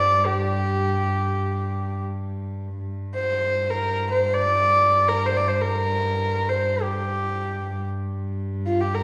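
Mongolian folk in free time and the G yu mode, tuned to A4 = 438 Hz, this windswept, solemn passage cut from a longer piece sets a nasal, biting horsehead fiddle melody with light vibrato and portamento, husky and up front, over a floating, sul tasto cello drone on G2 with a soft attack, all bathed in the wet reverb of a recital hall before slowing from 7.7 seconds to the close.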